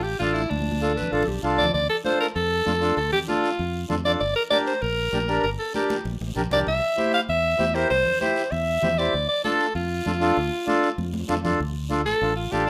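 Driving and danceable, this cumbia fragment puts a gritty, close-miked alto saxophone up front over a reedy, dark accordion and a fingered electric bass, with bright, high-tuned congas and a raspy guiro sitting in the background, while a breathy clarinet with vibrato and scooped notes slips in briefly from 0.8 to 1.7 seconds before the saxophone takes a solo at 11.6 seconds, heard through a rough home-demo mix with a wet small-room sound.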